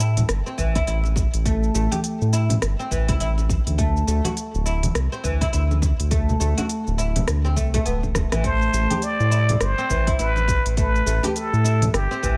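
Organic downtempo at 103 BPM in A minor, hypnotic and meditative with a swung 16th feel, where a woody, plectrum-plucked oud spins delayed arpeggios over a round, mellow analog bass sitting up front with tube saturation, as smooth electronic hats, rim clicks and shaker, soft-handed background congas and a deep, tape-toned electronic kick keep the pulse, until a drum fill at 8.2 s ushers in a raspy, growling plunger-muted trumpet solo at 8.5 s, with scooped notes, light vibrato and a touch of delay, all in light reverb.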